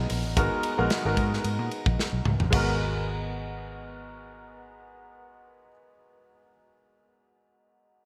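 A baby grand piano with analog chorus, a dark, foam-muted fingered electric bass and a punchy, mid-forward acoustic drum kit open this bittersweet, urban slice of polished 1980s jazz-funk pop at 111 BPM with a lightly swung sixteenth-note feel in G# minor on a G#m9 chord, the drums playing a fill from 2.0 to 2.5 s before dropping out at 2.7 s, the bass stopping at 5.7 s, and the up-front piano ringing on alone until 8.1 s in a lush hall reverb with bright digital sheen.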